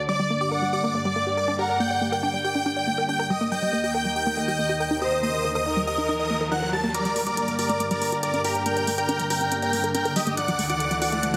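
A thick, chorused and phased sawtooth pad opens this emotional, driving uplifting trance passage, joined almost at once by a huge, bright, euphoric supersaw lead carrying the melody, a smooth bowed violin section with vibrato and dub echo playing a second line until 6.9 seconds, and mellow, punchy plucked arpeggios, while a background riser enters at 5.0 seconds and an overdriven analog electronic hi-hat arrives at 6.9 seconds for the build-up, the mix sounding heavily compressed and radio-like under light reverb.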